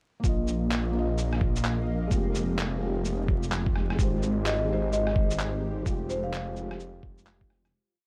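Future garage with a rainy, melancholic mood, built on a swung, skittering two-step groove that runs through the whole piece. A muffled, thumpy electronic kick sits up front beside a shuffled pattern of shaker, handclaps and rim click, and both carry a pitched-down, tape-warmed, gritty sampler character. A menacing detuned saw bass holds sustained root notes with a filter swell. A felt-muted upright piano plays intimate held chords in spread voicing, with audible action noise and a dark tone colored by tape echo, and both the bass and piano pump with sidechain compression. A blurred, cloudy granular pad enters at 1.1 seconds and hangs in the background, bathed in its own reverb and pumping in the same way. Woody marimba with soft mallets adds short, round melodic phrases through an analog delay from 4.5 seconds, while the piece fades out from 5.2 seconds under light reverb and vinyl crackle.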